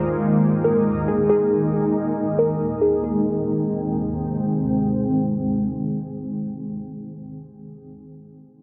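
Dreamy and floating, this half-time hip hop fragment, cut from a longer piece, opens on a cloudy, detuned granular pad holding sustained chords up front, while a glassy, crystalline wavetable pluck with chorus and delay carries the melody until 4.3 s, a faint reversed texture shimmers brightly in the background, a filter sweep runs over the first 3.0 s, and a huge ambient reverb blurs the move from Bb7sus4 to Abmaj7.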